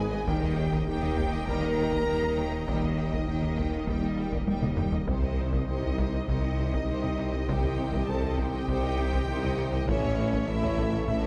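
A cinematic hybrid of orchestral and electronic film scoring, this brooding, futuristic passage is cut from a longer piece and moves at a straight 100 BPM in 4/4. Two violin sections carry a melody and a second line with smooth-topped, vibrato-rich bowing, while a distant, very quiet viola section adds accompaniment and a lush, detuned unison pad holds sustained chords beneath. French horns and a punchy, close-miked trombone section, entering at 0.3 seconds, fill out the sustained harmony as it passes through D#, Cm and A. The low end is deep and layered: a rich, close cello section, soft-attack double basses, a roomy tuba, a thick detuned saw bass and a funky, plucky analog bass riff, with a squelchy blip pluck playing arpeggios at a barely audible level. Heavy-stick taiko drums, compressed and saturated, sit in the background from 0.3 seconds and break into a fill at 4.5 seconds, all set in a moderate concert hall reverb.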